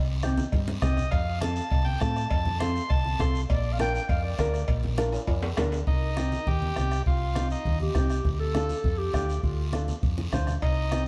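Danceable and fiery, this cumbia excerpt in C dorian runs at 202 BPM, with a round, dark hollow-body electric bass up front from 0.0 seconds, boxy thumb-plucked flamenco guitar, a soft-beater bombo in the background, very quiet low-tuned congas, raspy guiro and ringing cowbell and timbales under a buzzy vintage combo organ melody that alternates with a scooped, vibrato-laden jazz-style clarinet line entering at 3.5 seconds, all heard from further back in a room with moderate plate reverb over a Cm, F, Bb and Dm progression punctuated by drum fills.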